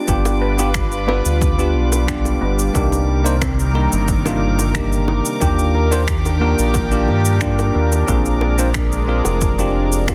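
Wistful and warm, this 90 BPM sunset chillout excerpt in C minor sets a bell-like tine electric piano with digital delay and a lush, detuned unison pad with chorus and phaser over a deep, round analog bass sitting up front, while a metallic steel pan plays background arpeggios until 8.9 seconds, a glassy high texture drifts above, and a punchy, overdriven electronic kick with overdriven shaker and finger snaps and very quiet, tight bongos drive a straight 4/4 groove through a G7, Cm7, Ebmaj7, Bb7 progression, all under shimmer reverb on the electric piano, pad, steel pan and glassy texture and a dense, heavily limited modern master.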